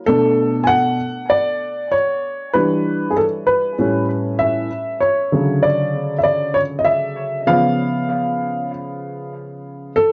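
A dark, woody upright piano with audible action noise and a slightly detuned, intimate tone plays alone, up front, through this smooth, warm hip hop excerpt at 97 BPM with a swung 16th-note feel, its chords moving from Bm7 through Em7, A7 and Dmaj7 to C#7, touched by analog delay and light reverb, while the cassette-tape sound keeps the top end muffled.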